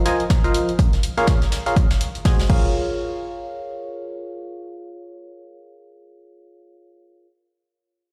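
Energetic yet bittersweet, this short piano house excerpt in Bb minor moves at 123 BPM with a swung 16th-note feel, built around a biting, percussive FM electric piano riff with a noisy edge, chorus, delay and sidechain pumping that runs to 7.3 seconds over chords of F7sus4, Bbm7 and Ab7. Beneath it, crash and hi-hat from a punchy analog drum machine and brushed hi-hat and snare from a soft, natural-sounding kit enter at 0.1 seconds, an up-front, tape-warm electronic kick joins at 0.3 seconds, and all the drums drop out by 2.6 seconds so the keys carry the later section alone. The whole mix sounds as if played on a big sound system in a bare room, washed in large studio reverb.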